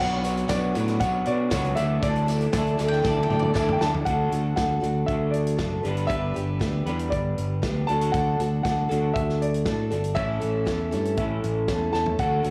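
A baby grand piano carries the melody over a shimmering, octave-doubled twelve-string acoustic guitar, a twangy, slightly broken-up electric guitar riff, up-front fingered bass and a barely audible tonewheel organ through a rotary speaker, with a natural country drum kit and a jingly tambourine joining at 0.2 s in this hopeful folk rock and heartland rock excerpt at 118 BPM in D major. A bright bowl-back mandolin adds a brief second line from 2.9 s as a drum fill leads into a D, G, D, A progression at 4.1 s, where the organ drops out before briefly returning near the close. The echo-heavy mix puts tape echo on the piano, twelve-string, drums and tambourine, with a punchy kick and a small room reverb framing the band.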